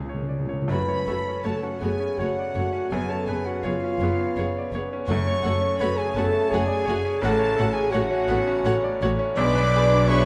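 In a rubato 3/4 at 83 BPM, this brief tragic, brooding passage from a romantic movement for piano and orchestra in F# minor opens with a timpani fill of hard mallets, heard again at 5.1 seconds, beneath mellow French horns holding chords and bowed strings whose violas, cellos and double basses play sul tasto with soft attacks. A clear, polished concert grand piano sits up front carrying the melody with deep bass and short sustain, joined from 0.7 seconds by violins with vibrato and a pure, straight-toned flute on a high second line, as a tight trombone section sustains chords in the background. The production is dark, with a concert hall reverb lending the intimate, close string sections some depth.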